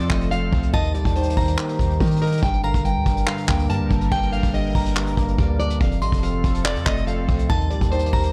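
Trap-flavoured hip hop at 142 BPM in a half-time feel, this eerie, menacing excerpt in G minor moves through F, Eb and G minor chords over about 8.3 seconds. A deep, boomy 808-style bass and an up-front brush drum kit with a punchy kick, hi-hat and handclaps carry the groove, while a gritty, barky overdriven tine electric piano plays the accompaniment. A picked steel-string acoustic guitar with audible finger squeak takes the melody, joined by a crystalline FM synth bell with chorus and delay playing a second line, as a slowly evolving sawtooth pad sustains chords in the background, all set in studio reverb.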